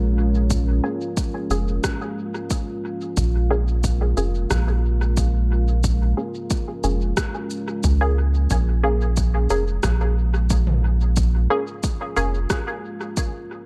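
A dark, detuned sawtooth pad with chorus and its own reverb opens this spacious ambient dub excerpt in Bb minor at 90 BPM, resting on a Bbm7 chord alongside a round, soft sub bass with tube saturation that sits up front until 12.5 seconds. From 0.5 seconds an overdriven, layered kick re-recorded in a large room joins a tape-toned electronic kit of rim clicks, shaker and toms sent through dub echo. A muted, plucky chord stab with analog chorus and dub echo carries a filter sweep, all within a deep, echo-heavy digital ambience.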